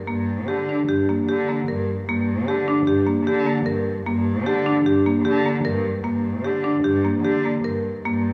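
From 0.1 seconds, a marimba struck with hard mallets and a single bowed cello enter together in this contemporary chamber piece, cut from a longer work. The marimba carries arpeggios between Bb3 and Bb4, its padauk bars giving a woody, percussive tone with a boxy, small-room character, placed up front. Beneath it, the cello holds the bass line between G2 and D3 with a rich, expressive voice, shaped by vibrato, soft attacks and portamento. The music moves at 151 BPM in a straight 5/4, and the uneven meter lends the G minor harmony, rooted on Gm, an urgent, restless mood. Both instruments sit in a wet concert hall reverb that lingers around them, and the excerpt runs to 8.3 seconds.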